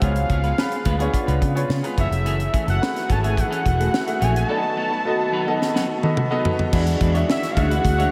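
Upbeat and urban, this polished 1980s jazz-funk pop excerpt sets a fat, detuned analog lead melody with delay over clear grand piano chords and a semi-hollow electric guitar riff, both treated with lush chorus, anchored by a round, punchy foam-muted fingered bass and a tight funk kit with a high-tuned snare, as a woody bowed string section enters at 2.3 s and a drum fill at 5.6 s leads into a new section at 6.7 s, all set in a dreamy hall reverb.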